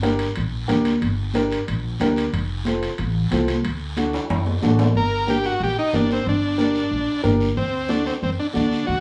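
A fiery, passionate cumbia excerpt at 183 BPM in G minor opens with an open, woody upright piano accompanying up front, a thumpy pizzicato upright bass with steel strings, bright high-tuned congas played with hard hands in the background, a raspy guiro and ringing metal-shell timbales, all moving through Gm, F and D. A drum fill from 4.1 seconds leads into a second section at 5.0 seconds, where the timbales drop out, the harmony turns to G harmonic minor over Gm and D7, and a buzzy, overdriven vintage combo organ with light vibrato takes the melody up front. The ensemble sits in a moderate studio ambience, with the small-room guiro and timbales keeping the feel close.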